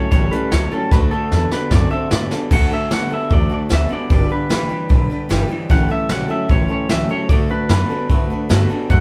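Rowdy and rollicking, this 151 BPM rockabilly excerpt in D major sets a compressed, twangy electric guitar melody from a small old amp over a brighter, slightly broken-up electric guitar riff and a full-bodied picked dreadnought acoustic, with a woody, thumpy pizzicato upright bass and an up-front brushed drum kit with dark cymbals and a boomy kick, as the band plays live in one room with light reverb through a drum fill from 0.9 to 2.5 seconds and chords moving A7, D, G, A7 and D.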